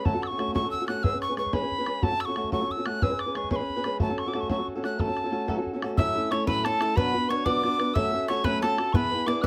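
A rolling 6/8 jig feel drives this lively, bright Celtic folk passage, cut from a longer piece. Up front, a tin whistle carries the melody with an airy, straight tone. Each of its notes is tongued with a clear chiff and played expressively from close range. A fingerpicked acoustic guitar in a swing style sits just as far forward, its dark, boxy voice supplying the accompaniment, while a damped, tight bodhran adds dry, close percussion. At 6.0 s the tune moves into a new section with a brighter harmonic color, and a mandolin joins with a round, double-strung second line set lower in the mix. A modest small-room reverb gives the group a compact, intimate space.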